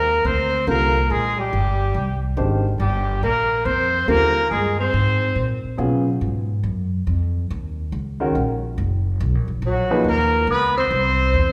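Searching and open in mood, this modal jazz passage swings at 141 BPM in 4/4, tuned slightly below standard pitch, and is cut from a longer piece. A clear, up-front trumpet carries the melody with light vibrato and a soft attack, while a tenor saxophone plays a second line an octave lower with vibrato, scooped notes and a smooth top. Both horns fall silent at 5.6 seconds and return at 9.7 seconds, as the harmony moves from Abmaj9 to Bmaj9 before landing on C. Underneath, a woody, thumpy upright bass on gut strings plays pizzicato throughout, and a concert grand piano enters at 0.7 seconds with an intimate, natural tone, deep low end and audible action noise. The whole group sits in the wet reverb of a recital hall, giving the trumpet a distant, roomy glow.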